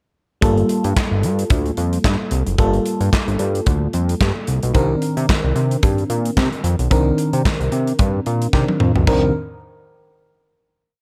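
A polished studio sound with an airy room and a gated reverb on the drums gives this short early-eighties boogie funk piece a danceable, late-night mood at 111 BPM in 4/4, with a light 16th-note swing in C dorian. From 0.4 seconds the acoustic drum kit drives a four-on-the-floor boogie beat, with a punchy kick, a medium-tuned snare layered with handclaps, bright cymbals, hi-hat, crash and toms, all sitting up front. Beneath it, a fat, detuned sawtooth analog bass with a saturated edge plays a thick, syncopated boogie line laced with chromatic approach notes, also up front in the mix. A glassy FM electric piano with a bell-like attack, a noise layer, chorus and tube saturation holds decaying drop-2 chords, moving from Gm9 to Cm9 midway through. A drum fill at 8.5 seconds closes the verse, and a final chord rings out until 11.0 seconds.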